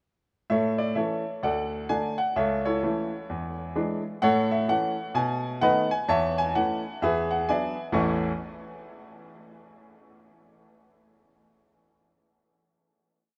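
A swung 4/4 pulse drives this short, complete stride jazz piece, exuberant and playful in mood. A bright grand piano plays solo from 0.5 to 8.3 s, its tune carried over chords with a stride bass below, ranging from A1 to C#6. The piano's tone is brilliant and smooth with a vintage character and short sustain, and it sits up front in the mix. The harmony moves through a brisk turnaround from A through D, E7 and B7 before settling on a final A chord at 7.9 s. A moderate but huge ambient reverb surrounds the playing, letting that closing chord ring out until 9.8 s.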